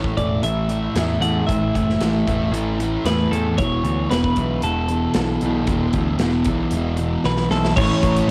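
A steady, straight 4/4 pulse at 114 BPM drives this hazy, blissful slice of shoegaze-tinged dream pop rock in A major, with a big acoustic drum kit's punchy kick, medium-tuned snare, hi-hat and bright crash cymbals rolling into a fill between 7.2 and 7.8 seconds. Up front, a dark, double-tracked fuzz guitar grinds out a low riff with distortion and subtle chorus, underpinned by a direct, punchy picked electric bass, while a clean, twangy twelve-string electric guitar sings a compressed melody through a cassette tape effect and analog delay. The harmony moves from A5 to Esus4 and resolves on A, all captured as a small-room home recording on cassette, cut from a longer piece.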